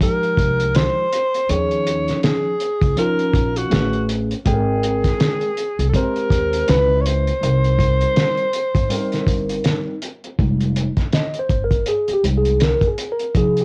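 A cool, mellow jazz-hop groove at 81 BPM in 4/4 with swung 16ths rides on a cloth-damped, thuddy drum kit with a fat snare, tight kick and a gritty, muffled cassette-tape character, while a woody, thumpy pizzicato upright bass joins at 0.4 s. In F minor, a breathy alto saxophone carries the melody up front with subtone, vibrato and scooped notes until 9.7 s, over a mellow tine electric piano whose phased, tape-tinged chords move from Fm9 through Eb9sus4, Amaj9, Abmaj9, Dbm7 and Cm7. The electric piano then takes a solo from 10.4 s back on Fm9, all captured as a home cassette recording in a small booth and cut from a longer piece.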